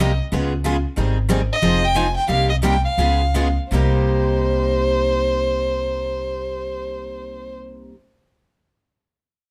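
A bowed violin, two picked steel-string acoustic guitars and a pizzicato upright bass start together in this swinging, virtuosic stretch of acoustic string swing in the jazz manouche style, cut from a longer piece. The violin carries the melody up front with vibrato, portamento and a soft attack, its single player sounding expressive and warm. Beneath it, the upright bass is dark and thumpy on gut strings, sitting just as far forward. One guitar is bright and full-bodied with fresh strings, while the second, quieter guitar stays in the background with a boxy parlour tone from old strings. The tempo slows from 1.0 to 3.7 seconds as the harmony moves through Db7, Abmaj7, Fm7 and Cm7, and the violin stops at 7.5 seconds while the band plays on. The close, detailed recording carries light reverb.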